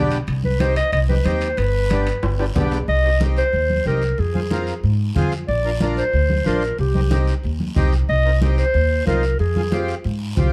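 A reedy, close-miked accordion and a woody, thumpy pizzicato upright bass open this passionate, danceable cumbia fragment. They are soon joined by raspy guiro, thick-skinned congas and ringing metal-shell timbales; the timbales sit in the background and drop out at 2.8 seconds, during a drum fill. From 0.5 seconds a mellow, smooth clarinet carries the classical-style solo melody up front, touched with plate reverb, while the dry accordion fills in beneath it over a straight four-beat feel in a dark, lightly reverberant production.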